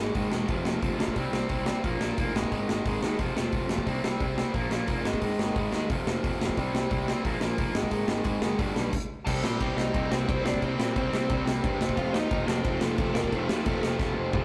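A straight, driving 4/4 pulse from an acoustic rock kit sits up front, its punchy kick, snare, hi-hat, toms and crash cymbals pushing this aggressive, angry punk rock fragment cut from a longer piece. Two overdriven electric guitars play the riff over a cycle of power chords, the raw garage guitar loud and forward while a second distorted guitar sits behind it. Beneath them a picked electric bass growls with fuzz. The band halts briefly at 8.9 seconds. A biting lead guitar slips in at 9.2 seconds in the background with a melody ranging into its upper register, and when the band returns at 9.3 seconds the harmony settles on a minor chord. A closing drum fill at 14.0 seconds runs to the cut, the take carrying the light reverb and tube-saturated grit of a rough rehearsal room.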